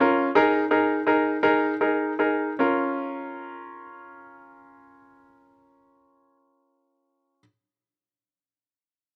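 Dramatic and melancholic, this short pop fragment in a straight 6/8 features a lone grand piano whose brilliant, polished tone and short sustain sit up front in a light, studio-like reverb. The piano plays accompaniment in the middle register as the opening passage slows, then settles onto a Bb minor chord at 2.6 seconds and carries on until 7.4 seconds.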